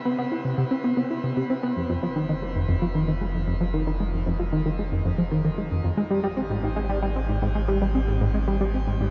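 Cosmic and expansive, this ambient, sequencer-driven space music moves at 114 BPM in a straight 4/4, set in F minor and tuned to A4 = 443 Hz. A tight sequenced synth carries the riff from 0.1 seconds, its detuned sawtooth and square-wave tones shaped by a filter pluck with a fast attack, sitting up front and treated with chorus and delay. At 1.8 seconds a round analog bass enters, its deep triangle and sine tones holding low beneath the riff. From that point the harmony moves from F7(no3) to Abmaj7(no3) at 6.0 seconds. A wet shimmer reverb with a long 7.6-second decay surrounds the dark, warm production. Cut from a longer piece, this excerpt feels driving yet spacious.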